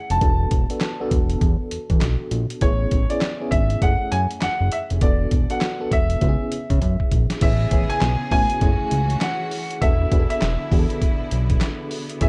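A smooth, vintage grand piano carries the melody through tape echo over a warbling FM electric piano with tremolo and phaser, joined almost at once by a fat, saturated analog bass and a gritty, compressed boom bap sampler-style kit with a thumpy kick, snare, hi-hat, handclaps and crash, in this punchy, confident new jack swing R&B excerpt with swung sixteenths, where a drum fill at 6.8 seconds leads into a lush, clear studio string section holding sustained chords from 7.4 seconds in a dark production with light reverb.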